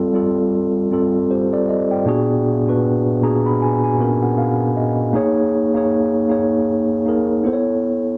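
Soulful and smooth, this brief R&B excerpt at 78 BPM with a 16th-note swing features a mellow tine electric piano playing alone, clean and up front through its built-in speakers, adding a fill from 2.8 to 5.1 seconds over chords moving from Fadd9 through Bb7b9b13 and Eb5 to Aadd9, all set in moderate studio reverb and colored by the warbling pitch drift of worn old cassette tape.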